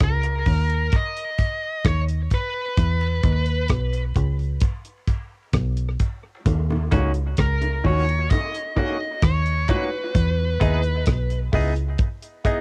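Dub reggae at a slow 65 BPM in Eb phrygian, spacious and meditative, this cassette-recorded excerpt sits a fingered electric bass, dark, round and foam-muted, up front beside a dry, damped drum kit of tight kick, hi-hat and rim click, while a distorted, high-gain lead guitar carries the melody through tape echo until 11.0 seconds. A very quiet tonewheel organ with key click and slow rotary vibrato and distant, high-tuned bongos with tape echo fill the opening stretch. At 6.9 seconds a bright, twangy clean guitar and mellow, woody upright piano stabs with long plate-reverb sustain take over the accompaniment.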